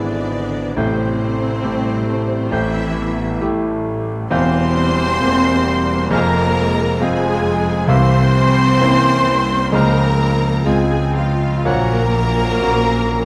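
Closely miked and detailed, with a moderate scoring-stage reverb, this brooding, passionate excerpt from a romantic movement for piano and orchestra moves slowly in 4/4 at 58-69 BPM with a free, rubato feel. An up-front, clear concert grand with deep bass carries the melody alongside a distant, intense violin section, while a lush, focused second violin section and an airy silver flute trace a second line over intense violas and a background of smooth cellos and rich double basses. Dark French horns and roomy trombones hold sustained chords, and from 0.8 to 12.0 s a very quiet clarinet, a cor anglais with light vibrato and a warm bassoon join as the harmony moves from E/G# through Fm and C7b9 to Dbmaj7 and Gb/Bb.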